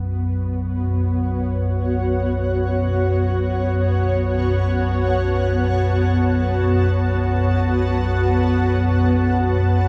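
Dark ambient drone in free time, unsettling and ominous, where a deep rumbling drone with phaser and subtle chorus sits up front beneath a blurred, detuned granular cloud pad sustaining an F#m/B chord, both playing throughout this cut from a longer piece and steeped in a wet cathedral reverb.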